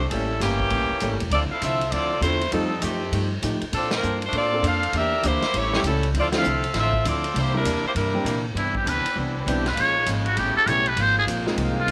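Brassy and joyful, this big band swing excerpt moves at a brisk 199 BPM, with a bright, tight saxophone section carrying the melody over woody pizzicato upright bass, a clean hollow-body archtop guitar, a vintage drum kit with punchy kick and dark cymbals, and natural-sounding grand piano. The band hits accents together at 3.9 and 6.3 seconds. At 8.6 seconds a buzzy, growling trumpet with a metal mute takes a raspy solo with vibrato and tape echo, backed by sustained chords from a second, clear-toned saxophone section, in a lightly reverberant space.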